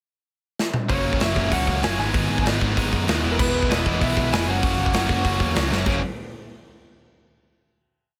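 Energetic and rowdy, this short punk rock piece in F# mixolydian charges along at 194 BPM in a straight 4/4, with a big rock drum kit kicking in with a fill at 0.6 seconds to lead from the pickup bar into a chorus that cycles through F#, G#m and E before landing on F#. Up front, the drums bring a punchy kick, medium-tuned snare, toms, hi-hat and bright cymbals in a big room, while a bright, tight distorted guitar and a sludgier overdriven guitar in the background drive eighth-note barre chords over a growly, punchy overdriven bass pumping out eighth notes. A slightly broken-up, compressed lead guitar with tape echo carries hook-like motif phrases on top until 5.4 seconds, and a last drum fill at 5.7 seconds ushers in the final chord under light reverb.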